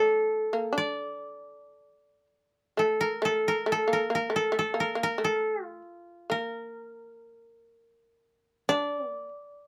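A woody, up-front koto melody played with fingerpicks opens alongside a buzzing, percussive shamisen second line in this solitary, meditative fragment of Japanese traditional chamber music, moving in a rubato 4/4 around 65-74 BPM and tuned to A4 = 435 Hz, with close, detailed microphones and light reverb capturing the shamisen's bright, powerful pluck until it stops at 9.3 seconds, just before the dry koto closes at 9.7 seconds.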